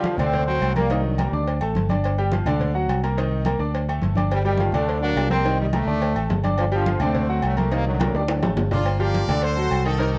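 A tight, close-miked trombone section opens this fiery, passionate salsa cut together with a bright concert grand piano, whose action noise and long sustain sit up front, and ringing congas in the background. A round, punchy fingered electric bass drives the groove beneath agogo bells and timbales with a metal-shell ring and a soft-handed, vintage-sounding cowbell and bongos, while the trombones drop out at 1.5 seconds and return at 4.3. During a drum fill, a brilliant horn section with light vibrato takes the melody at 8.7 seconds over a dark production with light reverb.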